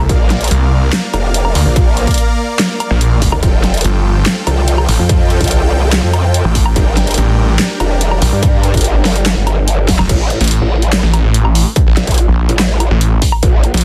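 Chaotic and aggressive, this heavy wobble dubstep fragment in half-time pits a growling, formant-filtered wobble bass and a snarling, resonant distorted saw bass against a tape-warm kit with a huge snare, bright hats, crashes, handclaps and woodblock, plus a layered distorted kick, while lush, sidechain-pumping supersaw chords move through Bb, Fadd9 and Gm before dropping out at 10.1 seconds after a drum fill at 9.9 seconds, all packed into a dense, heavily limited master.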